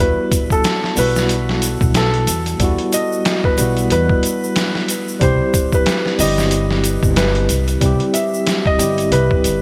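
Smoky and dark, this trip hop excerpt moves at 92 BPM with a swung 16th feel in E harmonic minor, as a soft, felt-muted upright piano with audible action noise and 12-bit sampler grit carries the melody over a clean tine electric piano with harmonic tremolo and a filter sweep, a woody, gut-strung pizzicato upright bass, and, from 0.3 seconds, an overdriven, pitched-down sampler-style drum kit with a thumpy kick up front plus a ringing egg shaker in the background, all in a lush hall and bright 1980s-style digital production as the harmony shifts from Emadd9 to C at 5.2 seconds.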